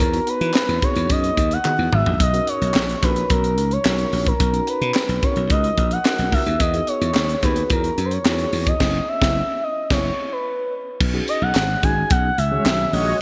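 A smooth, feel-good early-eighties boogie funk excerpt opens with a sawtooth portamento lead carrying the melody up front with vibrato and chorus, over a growly, punchy slap bass and a tight drum kit with a high-tuned snare and gated reverb that plays a fill at 1.6 seconds. A clean tine electric piano sits in the background alongside a very quiet, crisp group handclap, and after a band accent from 8.8 seconds, a dark, brassy synth brass line with ring modulation and a filter sweep enters at 12.5 seconds. The bright digital production is bathed in a lush hall reverb.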